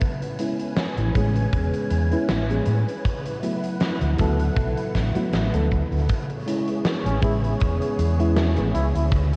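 Vaporwave with a nostalgic, woozy haze, built on silky string-machine chords treated with phaser and ensemble chorus, a warbling FM electric piano, a dark, round, overdriven fingered bass up front from 1.0 s, a tight kick and fat snare with hi-hat from a big rock kit in a bright stone room, and a mellow flugelhorn with vibrato entering at 7.1 s, all steeped in lush hall reverb and a cassette-tape sheen.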